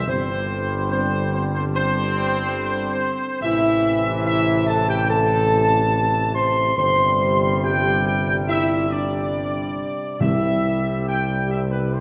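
A wet scoring-stage reverb surrounds this regal, triumphant classical brass passage at 71 BPM in a straight 4/4, cut from a longer piece and moving through Gsus4, Am, Gsus4 and C. Up front, a tight, mellow trumpet section carries the melody with light vibrato and a vintage tone, over sustained chords from a tight French horn section and a clear, punchy, close-miked trombone section, while a solo tuba with light vibrato holds the bass. Timpani played with medium mallets on calf heads enter in the background at 10.2 s, arriving with the C chord.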